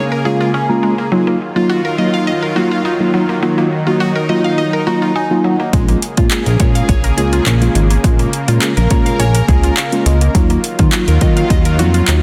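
A dense, heavily limited modern mix with light reverb opens this confident, energetic dance-pop excerpt at 104 BPM in 4/4, set in Bb minor and moving between Bbm7 and Ebmadd9. From the start, a lush, detuned supersaw pad holds sustained chords while a woody, mallet-like synth pluck spins arpeggios through chorus and digital delay, both breathing with sidechain pumping, as a barely audible downlifter sinks beneath them. A mellow tine electric piano, clean and heard as if through its built-in speakers, carries the accompaniment from 0.2 seconds and adds fills at the opening and again around 4.6 and 8.6 seconds. At 5.7 seconds a deep house drum kit arrives up front with a deep kick, metallic hats and handclaps, its overdriven, layered sound pushing the groove. A retro, glossy synth bass enters with it, dark and chorused, its pulse-width modulated tone evolving under the pumping chords until the cut at 12.2 seconds.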